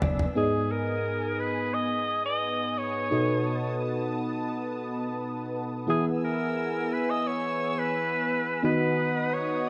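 An urgent yet nostalgic pop excerpt in G# minor at 87 BPM, where a bright, vintage alto saxophone carries the melody with vibrato and delay from 0.4 seconds, up front over a mellow, round FM electric piano with a warbling chorus. A lush, airy unison pad of detuned sawtooth tones sustains chords beneath, colored by chorus and phaser, while a twangy, clean twelve-string electric guitar riff sits in the background for only the opening 0.9 seconds. The harmony moves through G#m, B7, E and B/D#, all set in a moderate hall reverb.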